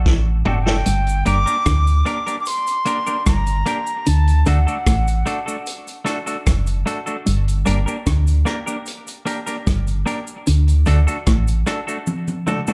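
A light reverb wraps this laid-back, hypnotic roots reggae excerpt at 75 BPM in G harmonic minor, where a round, sine-like sub bass sits up front with a vintage drum kit whose punchy kick, medium-tuned snare, rim clicks, hi-hat and toms have a rolled-off top, opening and closing with drum fills. An airy silver concert flute with vibrato carries the melody from 0.5 to 5.7 seconds through tape echo and plate reverb, while a hollow-bodied semi-hollow electric guitar adds clean accompaniment bathed in spring reverb and tape echo. A clean electric guitar plays a low, compressed riff through analog chorus, and a cabasa sits in the background as the harmony sways between D and Gm.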